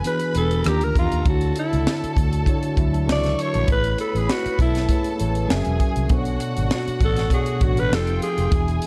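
Drums, electric piano and strings open this fragment of lush 1970s-style soul together, setting a romantic, smooth mood at 99 BPM in 4/4 with a gentle sixteenth-note swing. The tight funk kit sits up front, with its dry, polished hi-hat, rim click, high-tuned snare and tight kick. The mellow tine electric piano supplies clean accompaniment, while a distant, bowed string section adds a rich second line with light vibrato. An up-front, close-miked alto saxophone takes the solo almost at once, its breathy subtone turning raspy and growling in a jazz style. At 0.4 seconds a vintage, foam-muted fingered bass enters, dark and round, and from 1.2 seconds a very quiet French horn section holds smooth, classical-style sustained chords. The harmony drifts through lush seventh and ninth chords, from E7 through Amaj9 and Bm9 to F9, inside a dark production with light reverb and studio ambience.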